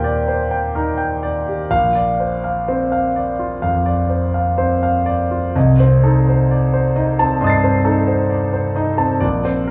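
Nocturnal and wistful, this impressionist classical piece for solo piano unfolds at a slow 60-68 BPM in 4/4, its rubato feel letting time stretch and settle in C dorian. A concert grand carries everything alone, sitting up front with a deep bass, smooth and vintage tone, and long sustain as it spans from Bb1 up to C7. The harmony drifts from Ebmaj7 to Bbadd9 at 1.7 seconds, then turns toward a darker Cm6 as a new section opens at 5.5 seconds. A moderate recital hall reverb, with a 1.5-second decay blended with a small room ambience, gives the instrument a gentle halo of space. Cut from a longer work, this brief passage runs just under ten seconds and feels like a fleeting glimpse into a late-night reverie.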